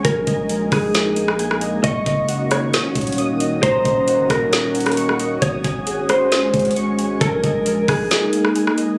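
A warbling, detuned tape-like pad pumping under sustained chords, nostalgic pulse-wave synth keys playing arpeggios, a dark, clean electric guitar melody through spring reverb and delay, a deep sine 808 bass, and an up-front trap kit with knocking kick, woody snare and metallic hats all begin this ethereal, hazy cloud-rap excerpt at 134 BPM in a half-time feel in Eb minor, moving through Bb7sus4, Ebm7 and Ab7sus4 as captured on a phone in a reverberant club room, until the bass and kick fall away at 8.1 seconds and the guitar stops at 8.5 seconds.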